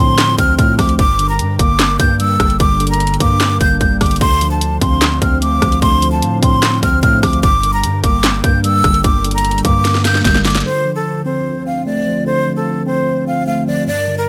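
A breathy, vibrato-laced jazz flute carries the melody up front over a mellow tine electric piano and a hollow, warbling chorused pad in the background, while a deep sine 808-style bass and an electronic trap kit with a hard-clipped kick, sharp snare, rim clicks, hi-hats and handclaps drive this dark, hard-hitting half-time trap piece at 149 BPM in D minor, until a drum fill at 9.8 seconds gives way to a closing stretch from 10.7 seconds where the drums and bass drop out, leaving flute, piano and pad in light reverb.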